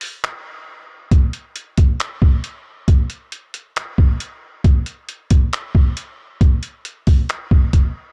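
A trip hop sampler-style drum kit of finger snaps, hi-hat and a thumpy kick opens this hazy, ethereal hip hop excerpt at 136 BPM in a half-time 4/4 feel, its gritty, pitched-down, compressed sound re-recorded in a small room and sitting up front in a dark production with little reverb, playing until 7.8 seconds.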